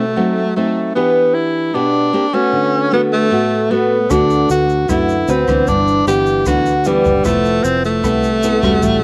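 Romantic and sophisticated, this bossa nova excerpt at 152 BPM opens with a breathy tenor saxophone carrying the jazz-style melody up front, its clear tone shaped by vibrato, scooped notes and a cassette-tape coloring, over a bright, fingerpicked classical nylon-string guitar with audible finger squeak. At 4.1 seconds a round, dark, foam-muted fingered electric bass joins, along with a natural-sounding brush drum kit in the background playing hi-hat, boomy kick and rim click through its own tape coloring, and a grainy, close egg shaker. Light studio reverb frames the home cassette recording.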